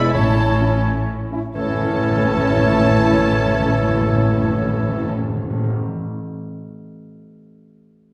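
Strings and winds open together in a graceful, cheerful classical-period movement in A major, 6/8 at 86 BPM with a rubato feel that slows over the first 1.6 seconds, as a rich, vibrato-laden violin section carries the melody over a second violin line, a clear, punchy oboe, hollow, airy flutes and a smooth-topped clarinet, while a dark, lush viola section and mellow bassoon accompany, round soft-mallet timpani sit up front with the cello and double bass sections anchoring the bass, and a very quiet French horn section adds sustained chords from 0.6 s, all in a reverberant hall in this brief excerpt cut from a longer piece.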